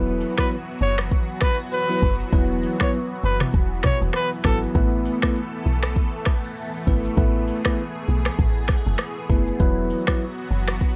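Afrobeats at 99 BPM with a swung sixteenth-note feel, joyful and romantic in mood, this short cut from a longer piece moves from Esus2 to Asus2 and back over a dry, gritty sound. A bell-like tine electric piano carries the accompaniment up front while a lush, detuned sawtooth pad with chorus and phaser sustains chords beneath, a round, percussive log drum bass with a fast attack anchors the low end, and an electronic afro-pop kit of deep kick, metallic hi-hats, finger snaps, rim clicks, shaker and toms sits forward from 0.2 seconds. A close-miked trumpet with light vibrato plays a punchy pop-style solo line from 0.4 to 4.6 seconds.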